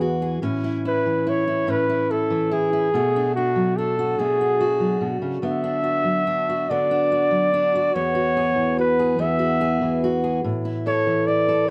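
A moderate studio reverb surrounds this intimate, tender acoustic folk-pop ballad, a short excerpt in A major that moves at a slow 48 BPM in a straight 6/8. Up front, a breathy flugelhorn with a soft attack and light vibrato carries the melody in a jazz-inflected solo voice, ranging from F#4 to E5. Beside it, a fingerpicked steel-string acoustic guitar with warm, fresh strings and audible finger squeak accompanies throughout, moving through A, Bm7, D6 and Eadd9 before returning to A at 10.4 seconds.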